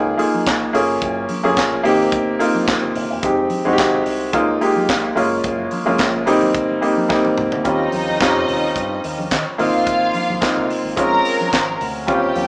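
A straight 4/4 disco groove, driving and glamorous, is carried by a tight funk kit with a high-tuned snare, handclaps and toms, while a clear, up-front grand piano plays extended chords over a round, envelope-filtered electric bass and soft-handed congas in the background, and a drum fill at 7.1 s leads into a lush, vibrato-rich string section at 7.7 s, with the band playing live in one room under a large wet reverb and a small-speaker sound, in a cut from a longer piece.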